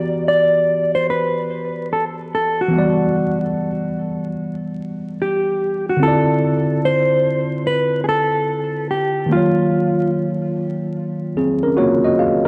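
Melancholic and hazy, this hip hop fragment, cut from a longer piece, drifts along with a lazy, swung sixteenth-note feel in 4/4. A mellow tine electric piano carries the accompaniment throughout, sitting up front with a clean, direct, slightly out-of-tune character. Over it, a dark, fingered electric guitar plays the melody, softened by a low-pass filter and trailed by tape echo, until it drops out at 10.1 seconds and leaves the keys to close alone. The harmony moves from Em9 to Dm9 and then slips onto D#m9 near the end. A moderate spring reverb gives the pair some space, while warbling cassette tape, vinyl crackle and a warbly pitch drift lend the whole a faded, worn patina with a dull top end.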